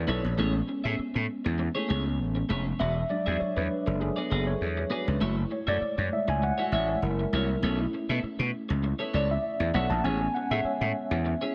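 Urban and bittersweet, this short slice of a longer pop piece moves at 99 BPM in 4/4 with a gentle swing on the sixteenths, tuned slightly flat to A4 = 439 Hz. A mellow tine electric piano sits up front, clean and heard as if through its built-in speakers, with a subtle chorus, and it takes a solo across the whole 11.5 seconds. Beneath it, a gritty slap bass growls with overdrive, punchy and amped, holding the low end from the first moment. A twelve-string electric guitar plays a twangy, compressed, picked riff with its own subtle chorus, entering at 0.1 seconds and sitting lower in the mix. The harmony drifts from Amaj7 through E9, F#m7, F#7 and B9sus4 before settling back on Amaj7, all wrapped in a light reverb.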